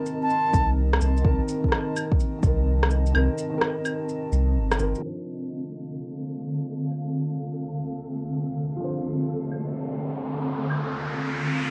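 Future garage with a rainy, nocturnal mood, cut from a longer piece, where a felt-muted upright piano with audible action noise and a blurred, evolving granular cloud pad pump under cassette tape grit over swung electronic shaker, rim click and claves. A breathy flute note enters at 0.2 seconds with tape echo, and a round dub sub bass and deep electronic kick carry the opening before the kick drops out at 3.1 seconds. From 5.0 seconds the harmony moves as a filter sweep runs, a flickering grainy texture drifts in, and an up-front riser builds from 9.3 seconds, all within a moderate studio reverb on a lo-fi home cassette recording.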